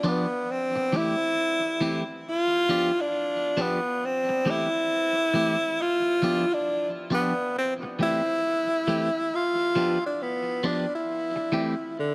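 Reggae in a swung groove with an uplifting, sunny mood, this short cut from a longer piece sets a clear, punchy tenor saxophone up front, close-miked and singing a vibrato-laden pop-style melody touched with tape echo. A clean, picked electric guitar sits lower in the mix as compressed accompaniment, colored by phaser and tape echo, moving between C6 and G7 chords. A moderate echo chamber reverb gives the whole a roomy glow, with the guitar dropping out at 11.7 seconds just before the saxophone's final note ends at 12.1.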